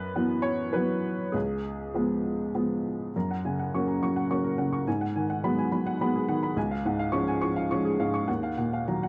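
Neoclassical minimalist piano in an intimate, peaceful mood, this short passage is cut from a longer piece and moves in a loose, rubato three-beat metre. A lone upright piano carries everything, its tone woody and a little worn, slightly detuned, and placed up front, spanning from C#2 to C#6. The opening bars rest on an Esus2 over F# and a C#7 before the harmony settles into F# major at 3.1 seconds as a second section begins. From there the chords pass through F#, G#m7 and C#, arriving at a D#madd9 at 8.3 seconds. The sound is dry and close in the manner of a 1970s studio, with only a touch of light reverb giving the piano an open, clear presence.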